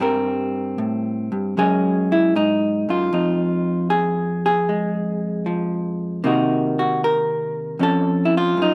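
A 77 BPM swing in 4/4 carries this late-night solo jazz excerpt, where a vintage hollow-body electric guitar, dark, clean and picked, sits up front in light reverb and spans F2 to Bb4 through Gmadd9, Gbsus2, Fm7, Cm7b5 and F7b13 across its 8.7 seconds.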